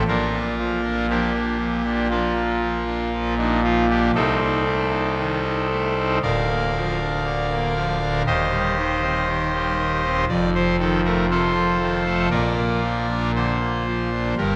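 A pipe organ on a bright, brassy trumpet stop, with baroque voicing and a touch of chiff, sounds up front from the start in this serene, majestic classical chorale excerpt in Bb major at 59 BPM, spanning D1 to F5 through a Bb, Adim/C, Bb/D, Cm/Eb and F7 progression that resolves to Bb at 12.3 seconds, all within a lush church reverb with a long 3.7-second decay.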